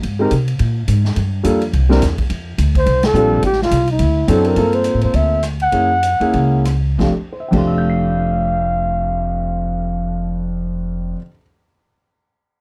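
Woody, pizzicato upright bass and a distant, roomy drum kit with a boomy kick open this relaxed, swinging small-group jazz excerpt in F major at 179-212 BPM, joined almost at once by an up-front concert grand whose action noise and long sustain sit close in a dry room. At 2.8 seconds a breathy, whispered flugelhorn with light vibrato takes the melody just as the band hits an accent, and the tempo then slows through the middle before the drums stop at 7.6 seconds while bass, piano and horn carry on.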